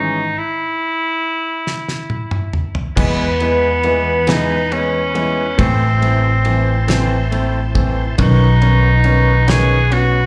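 In a slow, swaying 6/8 at 46 BPM, this romantic E major pop ballad opens on a clear, vintage tenor saxophone melody with scooped notes, upfront woody pizzicato upright bass and an intimate concert grand piano with audible action noise. The band stops at 0.4 seconds while a damped 70s kit with a fat snare and tight kick plays a fill from 1.7 seconds. At 3.0 seconds the chords move through E, Am and Badd9 as a reedy tonewheel organ joins in the background with key click, chorus vibrato and a slow rotary speaker, all heard as a live gig through the venue's PA with club reverb, and with slapback echo on the saxophone and piano.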